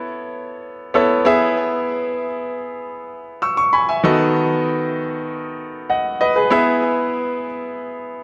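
A clear, polished concert grand piano plays alone through this romantic, nostalgic pop fragment, sitting up front with deep bass, short sustain and digital delay, moving from Aadd9 through E and B7/D# back to E inside a lush hall reverb.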